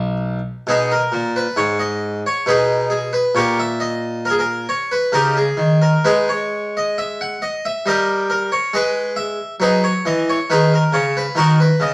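A solo harpsichord opens this short passage from a longer baroque-style suite movement, sounding a B chord before settling into G# minor at 0.7 seconds. At 67 BPM in 3/4, the playing has a flowing, serene quality, with a rubato feel that lets the pulse breathe. The French-style instrument, with two sets of strings, is close-miked and placed up front, giving a full, plucked tone across a range from B1 to F#5. The harmony moves through G#m/B, D#7/A#, an open G#5 and D#/G before returning to G#m and coming to rest on B at 11.4 seconds. A studio reverb surrounds the dry, immediate attack of the harpsichord, lending the room a soft glow.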